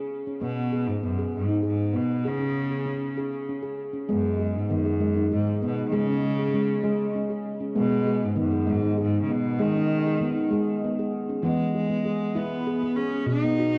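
A ringing, airy handpan opens this meditative world excerpt in G# minor, spinning sharp-stroked arpeggios at 65 BPM in a straight 6/8, and a bright, nasal bowed cello with light vibrato and tape echo joins at 0.4 seconds for a hypnotic melody over G#m and C#5 chords that turn to E and B near the close, all bathed in a lush hall reverb with the soft grain of a home cassette recording.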